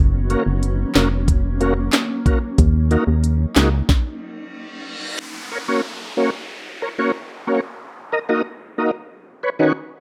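A cloudy granular pad with sidechain pumping and a hollow, dark FM bass open this tough, hypnotic dancehall excerpt at 92 BPM, joined almost at once by electronic afro-pop drums with a knocking kick, sharp snare, handclaps and smooth hats, and by a gritty overdriven tonewheel organ with key click, chorus vibrato and slow rotary speaker, which alone carries through a stop at 3.9 seconds as a faint reverse cymbal and downlifter arrive at 4.4 seconds, before the organ moves over Gb and Ebm chords nearly to the end of this rough home demo mix.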